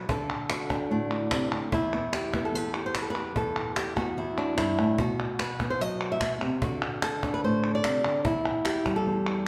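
Fiery and dramatic, this brief flamenco excerpt in E minor at 147 BPM puts a fingerpicked, up-front guitar with fresh-sounding strings on the melody, spanning E2 to E5 over chords moving through D, Em and B5, joined at 0.1 seconds by a woody cajon played with hard hands and faint snares and at 0.3 seconds by crisp palmas hand claps, all set in the wet reverb of a recital hall and tuned slightly low to A4 = 436 Hz.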